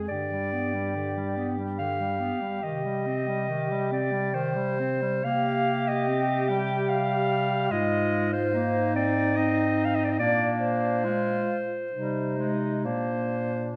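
Heard in a recital hall with moderate reverb, this short passage from a longer classical work for single-reed quartet has a warm, lyrical mood. It moves in three with a rubato feel, and all four instruments play throughout its roughly 13.8 seconds. A clear clarinet sits up front with the melody in its upper register, while a warm alto saxophone with vibrato adds a second line that sounds more distant and roomy. Beneath them, a bright clarinet supplies the accompaniment in its lower range, and a mellow bass clarinet, also up front, anchors the bass. The harmony passes from G through C minor and an F minor seventh over A-flat to a B-flat seventh, settling briefly on C minor before ending on B-flat.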